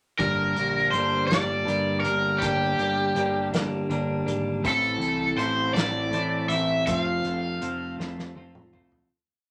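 An overdriven, bright garage guitar carries a motif-based melody through this cool, bittersweet indie rock piece in G dorian at 54 BPM in a straight 6/8, over twangy strummed chords from a clean, compressed twelve-string electric guitar, a growling picked bass with overdrive driving eighth notes, and an acoustic drum kit played with bundle sticks around a punchy kick, set in moderate studio reverb as the chords move from Gm to Am to F before a fade-out from 6.9 seconds and a closing drum fill at 8.0 seconds.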